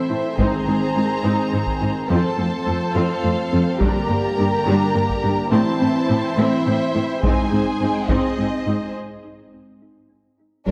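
Swaying in a straight 6/8 at 70 BPM in dotted quarters, this vast, tense hybrid orchestral and electronic film-score cut pairs close, dry taiko ensemble hits from 0.4 seconds with a rich, lush cello bass, a focused viola accompaniment sitting in the background, a smooth symphonic violin second line, and a filtered studio violin melody with vibrato that stops at 8.9 seconds, all bathed in a wet scoring-stage reverb over a detuned sawtooth analog pad with chorus and a round, tine-like FM pluck whose dark, delayed arpeggios drift behind the chords Ab, F, Gm and Am before a break at 9.0 seconds.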